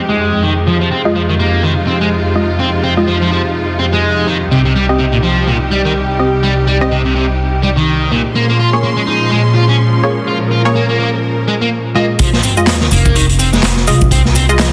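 A bright, distorted electric guitar riff sits up front through this energetic, funky breakbeat excerpt, double-tracked and compressed, with a low-pass filter and dub echo trailing its picked lines. Alongside it, a rich studio string section holds smooth, bowed chords with vibrato, pumping against a sidechain while the harmony moves from Fm7 to Cm to Bbm7. A muted, detuned sawtooth chord stab with a quick pluck and short decay adds chorus-thickened dub echo and undergoes a filter sweep during this opening passage. At 12.2 seconds the strings stop and the track drops into a gritty, saturated garage drum kit with a punchy kick and medium-tuned snare, joined by layered electronic shaker and handclaps and a sub drop impact in the background. A woody, dark pizzicato upright bass enters up front at 12.9 seconds. The mix is dense and heavily limited, set in a small room reverb with a swung groove.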